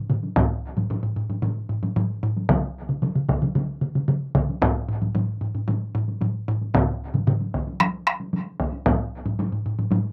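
Driving and powerful, this brief cut from a longer Japanese traditional taiko piece moves at 113 BPM in a straight 4/4, with a heavy-sticked taiko ensemble carrying a live-room sound up front alongside three up-front solo taiko drum parts: two struck with hard sticks and given a compressed, saturated edge, one of which drops out at 8.2 seconds, and a third played with heavy sticks in a vintage, band-limited tone, the performance recorded outdoors with light reverb.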